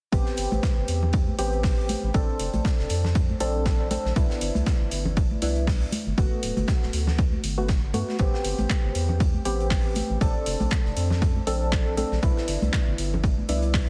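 Smooth and hypnotic, this deep house passage, cut from a longer piece, rides a swung groove built on a punchy, up-front electronic kick, a layered electronic kit of handclaps and metallic hats, a big acoustic kit whose fat snare and filtered hats sit back in a bright stone room, and soft-handed, close and dry congas tucked in the background. A round, deep analog bass pumps beneath hollow, nasal organ stabs thickened with chorus and trailed by dub echo, moving through Am7, Bbmaj7, Cmaj9 and Gmaj7. The whole mix carries a heavily compressed, radio-like sheen over light small-room ambience.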